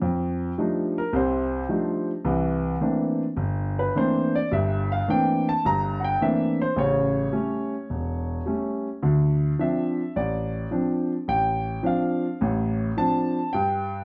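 Sophisticated and playful, this excerpt of swinging jazz features a solo grand piano with a smooth, vintage tone and long sustain, sitting up front in a large, reverberant studio room. The harmony moves through rich thirteenth chords before settling onto a dominant seventh and a minor seventh. The piano covers a broad span of its range, from the deep bass up into its upper register, and the chords drop away at 13.5 seconds as the excerpt runs on to 14 seconds.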